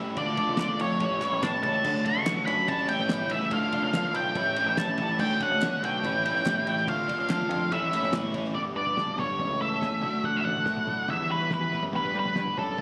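An up-front octave-fuzz lead guitar carries the melody in this short indie rock excerpt, its dark, distorted tone sitting high above the band at a straight 143 BPM in 4/4. The mood is wistful yet upbeat, with the harmony in A mixolydian circling between Dm, A7 and Dmaj7 before the second section shifts through G, A, Dadd9, Emadd9 and Gmaj7 from 8.6 seconds. Underneath, a bright, twangy twelve-string electric guitar and an overdriven electric guitar tucked in the background play riffs, both touched with subtle chorus. A picked electric bass gives a round, punchy low end, and a cloth-damped drum kit thuds along with a fat snare, tight kick and dark, rolled-off cymbals. A crisp, close group handclap joins at 0.6 seconds and drops out at 8.2 seconds. The sound is dry, with little reverb, captured on a phone in the room with club reverb and compression.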